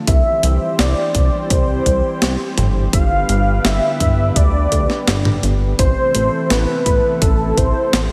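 Opening on a lush, warbling sawtooth pad with chorus and sidechain pumping at 0.0 s, this romantic, uplifting synthwave fragment in C major at 84 BPM brings in a bold, detuned unison lead carrying the melody through sampler grit, slapback echo and delay, a glossy chorused synth bass with a fast pluck, a punchy, tape-warm electronic kick that drops out at 7.7 s, and an overdriven 12-bit drum machine with hi-hat, snare and toms, all set in a big arena-like hall over C, G and Am.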